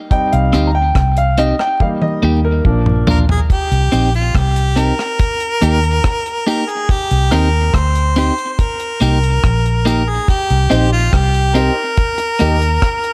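Laid-back and meditative, this roots reggae excerpt in C minor moves at 71 BPM, with a clear, woody upright piano stabbing through the opening 3.5 seconds over a drum fill before it steps back and returns briefly near the end. A dark, round muted electric bass sits up front with a deep, dry drum kit of hi-hat, tight kick, rim click and toms, while a clean, compressed electric guitar adds tape-echoed accompaniment. From 3.1 seconds a harmonica carries the melody with vibrato and scooped notes, its tone warm and touched by tape echo, all set in a small room with light reverb and vinyl crackle.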